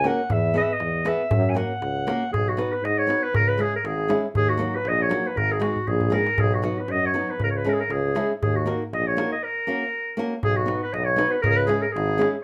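Wild and exuberant, this swung 2/4 Balkan wedding-band folk excerpt sets a roomy, up-front clarinet on the melody, with a solo turn in its opening 2.3 seconds, over fingerpicked acoustic flamenco guitar, a clear tuba bass with light vibrato, and close, dry clay-shell darbuka played with hard hands. A drum fill arrives at 5.7 seconds and a break at 9.4 seconds, all in a moderate studio reverb.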